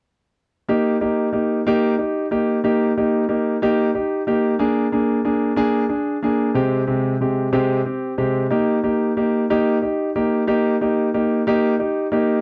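Romantic and heartfelt, this short cut from a longer pop piece in Eb major sways in 6/8 at 61 BPM, with a clear concert grand piano playing accompaniment from 0.7 to 12.4 seconds, sitting up front with deep bass, smooth vintage tone and long sustain as it moves through Eb, Bb7 and Abmaj7/C before settling back on Eb, all captured in a dry, close 1970s-style studio sound with light reverb.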